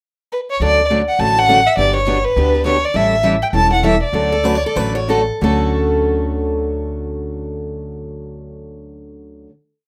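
A rough home-demo sound with a modest small-room ambience frames this lively, playful gypsy-jazz piece in D major, swinging at 176-206 BPM and slowing down from 2.9 s until the final chord at 5.4 s. Up front, a close, expressive bowed violin with vibrato, portamento and a slapback echo sings a motif-based melody over a woody, thumpy upright bass playing two-beat root and fifth on gut strings, plus two bright, fresh-stringed picked steel-string guitars, one sitting in the background with short four-to-the-bar rhythm accented on two and four. From 4.3 s, a third picked guitar adds answering phrases in the melody's rests, with finger squeak audible.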